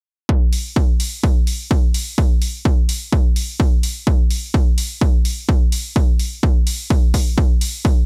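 A swung house groove at 127 BPM in 4/4, with the sixteenths pushed to a 58% shuffle, drives this short, bittersweet yet energetic cut from a longer piece. A punchy, overdriven electronic kick sits up front from 0.3 s, joined at 0.5 s by layered, tape-warm electronic hi-hats set well beneath it in the mix. The sound is dry and close, carrying a single section through to about 8 seconds.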